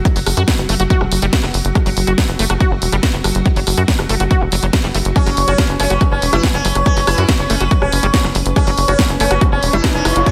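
Light reverb and a digital ambience frame this psychedelic trance excerpt at 141 BPM, where an alien mood grows from a heavy, layered electronic kick, a techno kit with a cracking snare, hi-hat and rim click, and a tight, nasal sequencer bass sitting up front over a rootless Esus2. Behind them, a squelchy, resonant acid bass riff with chorus, tape echo and sidechain pumping mingles with a morphing, detuned wavetable pad of sustained chords, bright with ensemble chorus, phaser and pumping. At 5.2 seconds a buzzing, shimmering sitar melody arrives up front through phaser and dub echo, and a riser enters in the background at 9.2 seconds.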